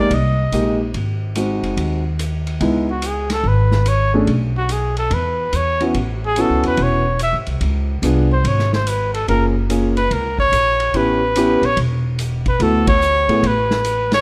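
Small-group swing and bop jazz with a cool, late-night mood, built on a swung 4/4 groove, with a clear, close-miked trumpet carrying the solo melody up front with light vibrato over a warm concert grand piano with deep bass and long sustain, which drops out at 13.4 seconds. A woody, thumpy upright bass on gut strings sits prominently beneath, while a vintage drum kit with dark cymbals, a punchy kick and a pumping small-room sound plays hi-hat, ride and snare lower in the mix. Light reverb surrounds the group, chords move through colors like C#m7, C#7b9 and F#maj9, and a band accent lands at 12.8 seconds before this cut from a longer piece ends.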